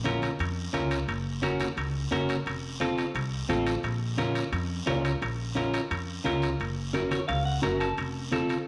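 Driving and passionate, this cumbia excerpt sets a clean, picked electric guitar and a woody pizzicato upright bass up front, with the guitar slipping in a short fill at 6.9 seconds over a minor-key progression. Behind them, very quiet, thick-skinned congas sit distant in a large room, a raspy guiro scrapes along, and ringing metal-shell timbales add a vintage, band-limited sheen. The whole cut is bathed in a wet echo-chamber reverb with the feel of a small room.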